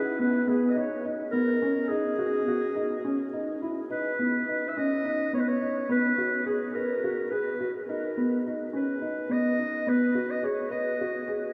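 A felt-muted upright piano and a mellow classical-style clarinet begin together, the piano's soft, boxy arpeggios sitting close and intimate while the solo clarinet carries the melody with a distant, roomy tone. This contemporary instrumental fragment in G# minor moves at 211 BPM in eighths, in a restless, urgent 7/8 with a straight feel, shifting from G#m7 to G#m at 3.9 seconds. A huge, wet reverb with an 8.0-second decay places the pair in a vast, echoing space.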